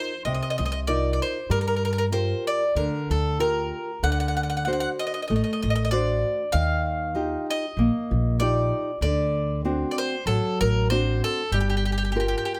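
A gently swung 4/4 lilt carries this romantic, passionate Italian folk serenade, a brief passage cut from a longer piece. A bright, double-strung mandolin sits up front with the picked melody, while a small, fingerpicked nylon-string guitar supplies the accompaniment and a woody pizzicato upright bass joins at 0.3 seconds, also close and present. Light reverb and close, detailed miking frame the minor-key harmony as it moves through dominant sevenths and a lush add9 chord before settling home.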